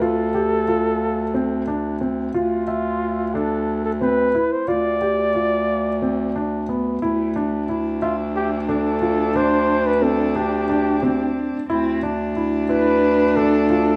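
Set in a straight 7/8 at 180 eighth-note beats per minute, this restless, hypnotic piece of contemporary chamber music in D dorian rings in a moderate recital hall reverb. An up-front flugelhorn carries the melody with a soft attack, vibrato and a smooth, jazz-inflected top, over a dark, worn grand piano playing arpeggios with audible action noise and long sustain, while a vintage-toned bass clarinet holds a low D. At 7.0 seconds a single bowed, woody cello joins with a second line, just as the harmony, having moved from F over D to D minor, settles on a D5 chord.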